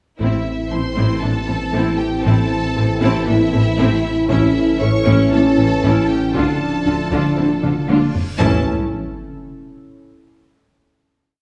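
A straight 4/4 pulse at 117 BPM drives this brooding, relentless hybrid orchestral and electronic film score in A minor: a background taiko ensemble beats a big, heavy-stick ostinato that pauses from 1.2 s until 4.3 s, while lush bowed violins sing the vibrato melody with a second violin section doubling it at the octave and in unison, rich violas churn a driving ostinato, a very quiet cello section, double basses, a dark tuba and a deep sine sub bass anchor the low end, French horns and a shimmering pulse-width pad hold sustained chords, a tight, nasal sequenced synth pulses arpeggios, and a huge, bright reverse cymbal and sub drop at 8.1 s lead into a final A chord ringing in a recital hall reverb.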